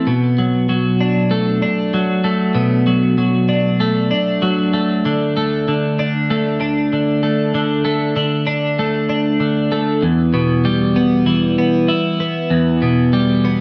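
Rock in E minor at 96 BPM, this short excerpt features a lone twelve-string electric guitar, bright, clean and twangy, sitting up front with compressed, picked tone touched by subtle chorus and digital delay. It moves through Bm7 and D5 before arriving on Em at 10.0 seconds, carrying a cathartic yet melancholic mood. A wet large-studio reverb with digital ambience surrounds the guitar, giving the sound a spacious feel.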